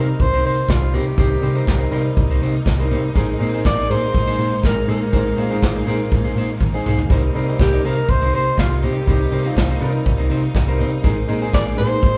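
A roomy, live-in-one-room sound with a moderate large studio reverb frames this joyful, danceable disco fragment at 122 BPM in straight 4/4. Up front, a breathy alto saxophone carries the melody in a jazz style, with subtone, light vibrato and scooped notes. Beneath it, a dark, round, hollow-body electric bass, fingered and amped, gives a punchy low end. A vintage brush drum kit sits forward with an acoustic small-room character, a tight kick, a medium-tuned snare and a rolled-off top; it enters at 0.2 s and plays a fill between 6.6 and 7.1 s. A clean, picked electric guitar and a clear concert grand piano with deep bass share the accompaniment, while a close, bowed studio string ensemble holds expressive sustained chords in the background as the harmony moves between Cm7 and Bb9sus4.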